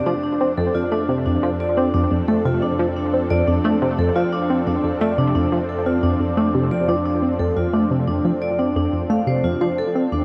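Mysterious and hypnotic, this short excerpt of ambient, sequencer-driven space music at 88 BPM sets an up-front, tight sawtooth synth riff with filter-pluck bite and delay over ringing, dark vibraphone arpeggios struck with medium hard mallets, while a lush, nasal unison pad sustains F6 chords from the first moment and a pulse-width-modulated analog drone hums low underneath from 0.3 seconds, all bathed in a huge ambient reverb.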